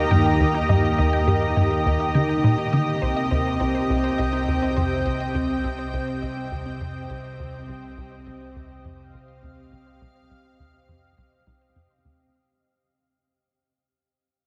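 Luminous and expansive, this ambient piece moves in a straight 4/4 feel, cut from a longer work and fading out across its full 12.3 seconds. A lush unison pad holds sustained chords up front, its airy, detuned sawtooth tone softened by a gentle attack and thickened with chorus. Beneath it, a tight sequencer bass drives a punchy riff with a saturated, wave-folded edge, treated with lush chorus and delay. A fat analog bass sits in the background with a thick ring-modulated tone and a filter sweep running throughout, while a very quiet unison pluck traces warbling, vintage-tinged arpeggios. The harmony shifts from Eb to Cm at 3.0 seconds, all of it bathed in a huge, wet ambient reverb.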